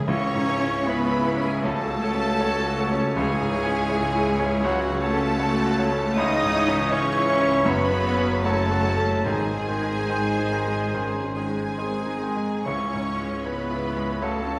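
A wet scoring-stage reverb surrounds this brooding, passionate romantic movement for piano and orchestra in C# minor, an excerpt cut from a longer piece that moves in a rubato 4/4 between 64 and 82 BPM. A bright, brilliant grand piano sits up front with long sustain and carries the melody, joined by a rich, focused violin section singing high with vibrato. Beneath them, second lines come from a clear clarinet, an airy flute in the background, a soft-attack second violin section, and a very quiet oboe. A smooth viola section and a bassoon fill the accompaniment, while a tight French horn section holds sustained chords and a trumpet with a smooth top adds stabs from behind. The bass rests on cellos with portamento, a lush double bass section and a distant, roomy tuba, and hard-mallet timpani strike articulately from 0.0 to 4.2 seconds and again from 9.3 seconds. The harmony rocks between C#m and F#m/C#, then leans on G# at 9.3 seconds before settling back on C#m.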